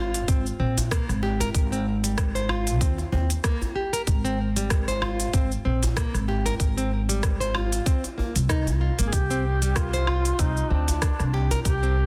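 A 95 BPM groove in 4/4 with a light 16th-note swing drives this meditative, organic downtempo excerpt, anchored by a tight, up-front electronic kick and an electronic kit of crisp hi-hats, rim clicks, shaker and woodblock, all carrying a tape-warm, small-room character. In the background, a medium-tuned djembe with metal rattles is struck with hard hands and sits distant in a large room. A woody, dark, gut-string upright bass plays thumpy pizzicato up front, pumping against a sidechain. A fingerpicked classical nylon-string guitar spins arpeggios over Abmaj7, colored by vintage 12-bit sampler grit and tape echo. At 9.1 s the harmony moves to Csus2 as a duduk enters with a soft attack, vibrato and scooped notes, playing a roomy, folk-style solo through digital delay. Light reverb surrounds a dense, heavily limited modern master.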